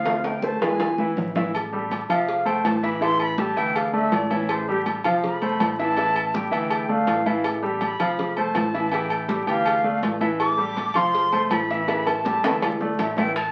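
Sophisticated and driving, this Afro-Cuban jazz excerpt in A minor moves at 162 BPM in a straight 4/4, with an airy, expressive concert flute heard at a distance that takes a vibrato-laden solo from 1.5 seconds while an up-front baby grand piano with short sustain comps beneath it and a growly, amped fingered electric bass anchors the low end. Bright, thin-skinned congas, high-tuned bongos and cowbell tucked in the background, and ringing metal-shell timbales with agogo bells drive the groove, opening with a drum fill and returning to another at 11.9 seconds. The whole is bathed in studio reverb and the crackle of a very old 78 rpm record, giving it a vintage, dusty patina.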